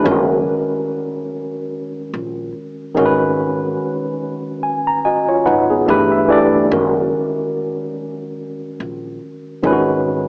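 A lazy swung groove in 4/4 sets a dreamy, mellow lo-fi hip hop mood in this short excerpt, with a worn, slightly out-of-tune tine electric piano sitting up front, lightly overdriven and dulled by cassette tape and a low-pass filter as it moves through lush sixth-nine and suspended chords. A woody pizzicato upright bass enters at 0.1 seconds, low in the mix, while a long plate reverb and warbling old-tape pitch drift give the recording a hazy, small-speaker character, with the harmony circling back to its opening chord at 6.7 seconds.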